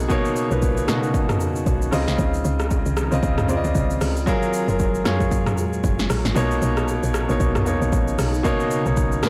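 Swung sixteenths at 115 BPM drive this soulful amapiano fragment in B lydian, where an up-front, overdriven deep house kit of deep kick, punchy snare, metallic hats, rim click, shaker and toms (its kick dropping out from 6.4 to 7.4 seconds) joins a woody, percussive log drum bass beneath an intimate grand piano with audible action noise and long sustain, while a very quiet, ethereal pad with ensemble chorus floats through Bmaj9, C#maj9 and F#maj9 chords, all within a blown-out, overdriven recording.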